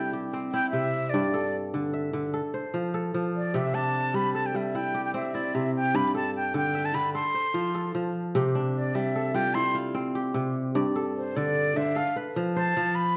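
This West African traditional piece, a short portion cut from a longer work, moves at 100 BPM in a straight 12/8 in C major with a hypnotic, flowing mood. An acoustic kora, bright and crisp, fingerpicks ringing arpeggios from G2 up to E5, sitting up front for the full 13.2 seconds. A breathy concert flute, close-miked and also up front, carries the melody between C5 and C6 with a straight tone and a soft attack. The harmony cycles through C, G5 and F, and from 8.4 seconds the flute takes a solo over the continuing kora. A wet recital hall reverb with a 1.2-second decay surrounds the pair, and the production leans dark and warm.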